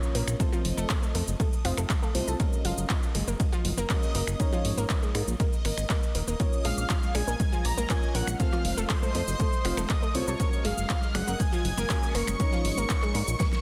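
A dense, heavily limited modern mix with light reverb opens this driving, dreamy progressive house excerpt at 120 BPM in a straight 4/4, cut from a longer piece. A punchy, overdriven electronic kick sits up front from 0.4 seconds, joined by a layered deep house kit of finger snaps, handclaps, hi-hat, ride, shaker and a fat snare, while a thick, saturated sawtooth bass pumps against the kick beneath chords moving through F, Gbadd9, Absus4 and Bbm. Round, detuned analog pluck arpeggios with a noise layer and filter sweep weave through chorus and dub echo, a dark, nasal chord stab echoes in the background, and a reversed, granular texture swells high above. Around 6.5 seconds, very quiet woodblock, congas and cowbell slip in, and a bold unison lead carries the melody with vibrato, 12-bit sampler grit and dub echo, shadowed by a soft, floating violin section bowing sul tasto in the background. 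A drum fill at 13.4 seconds closes the passage.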